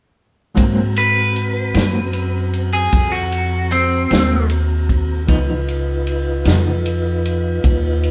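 A clean, hollow-body semi-hollow electric guitar with tremolo and a soft, flute-like tonewheel organ with chorus vibrato, key click and fast rotary speaker open this soulful, laid-back slow blues in 12/8 at 51 BPM, moving from Ab9 to Db9 in Ab mixolydian. A woody, dark pizzicato upright bass and a vintage drum kit with punchy kick, ride and medium-tuned snare sit up front, while a twangy, slightly broken-up lead guitar plays a compressed, picked melody from 1.0 to 4.5 s. The band plays live in one stone room with moderate reverb, and the semi-hollow guitar stops at 6.7 s in this excerpt from a longer piece.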